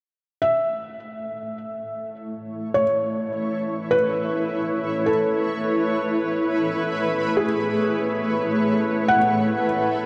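A felt-muted upright piano opens at 0.4 seconds with a soft, intimate melody in A major, its mellow tone touched by delay and the faint sound of its action close up front. By 1.2 seconds a granular cloud pad joins with sustained chords on an Aadd9 harmony, its blurred, evolving texture set forward and wrapped in its own reverb. The mood is luminous and peaceful, moving at a slow 52 BPM in a straight 4/4. Just before the end, at 9.9 seconds, a very quiet organ-like drone appears, calm and detuned with ensemble chorus and ring modulation. A huge, wet ambient space with a dark production surrounds the parts in this short piece cut from a longer ambient work.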